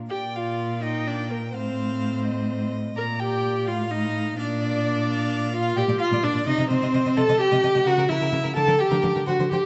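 Heard through vinyl crackle with a dulled top end and a moderate recital-hall reverb, this brief, cheerful, spirited cut from a quick classical-period string quartet movement moves in a rubato 6/8 at 85 BPM in B-flat major before turning to G minor at 5.8 seconds, with a clear, focused first violin carrying the melody alongside a smooth, even second violin line, a full-bodied viola accompaniment placed up front, and a close, expressive cello bass with soft attacks and portamento, all four players bowing with vibrato.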